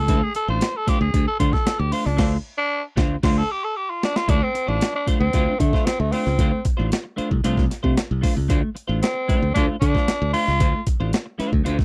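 A breathy, raspy tenor saxophone leads this cool, driving funk excerpt in D minor at 114 BPM, soloing over a Dm7 chord through the opening 4.3 seconds as the band hits an accent and the gritty, pitched-up breakbeat drum kit with its thumpy kick plays a fill, while a growly, bright fingered bass and a clean semi-hollow guitar with analog chorus fill out a dry, close 1970s-style studio sound, the saxophone dropping out at 10.8 seconds.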